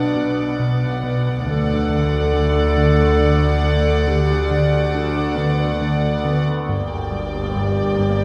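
Cinematic suspense film score in a slow 3/4, mysterious and ominous, cut from a longer piece and set back in a wet scoring-stage reverb, with chords moving from Bm to D and darkening to Gm at 6.7 seconds. A softly bowed, sul tasto chamber violin section carries the melody in a gentle vibrato, while a clear, close-miked classical clarinet and a floating, pure studio violin section add second lines, and a dusky viola section and glassy glass harmonica chords sit in the background. Beneath, a dark cello section and a clear double bass section hold the low end, an overtone-sweeping sawtooth drone with chorus and phaser hums behind them, and a fat, detuned analog bass riff with a filter sweep enters at 0.2 seconds.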